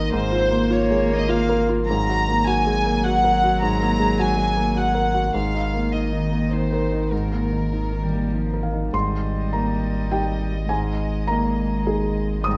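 Intimate and hopeful, this neoclassical piano-and-strings excerpt moves in a rubato 3/4 at 103 BPM in Ab major. A felt-muted upright piano sits up front with the accompaniment, its mellow, short-lived notes carrying audible action noise. Alongside it, a chamber violin section carries the melody, bowed sul tasto with light vibrato and a soft attack, while a single cello plays a second line in the background with an airy bow. A deep, saturated sine sub bass holds a thick, sustained Ab beneath the ensemble, and every part plays for the full 12.6 seconds. The harmony drifts from Bb5/Ab through Gbadd9/Ab to Absus2, and a new section begins at 8.9 s on Eb/Ab, all set in the moderate bloom of a scoring stage.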